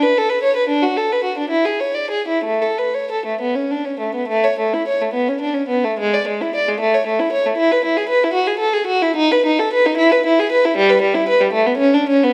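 Classical baroque-style suite movement for unaccompanied violin in 6/8 with free rubato, where a single up-front bowed violin with a dark, woody tone and vibrato sings a serene, radiant line through a reverberant recital hall, opening with one idea and shifting into a contrasting passage at 4.3 seconds before this brief fragment of a longer piece ends at 12.3 seconds.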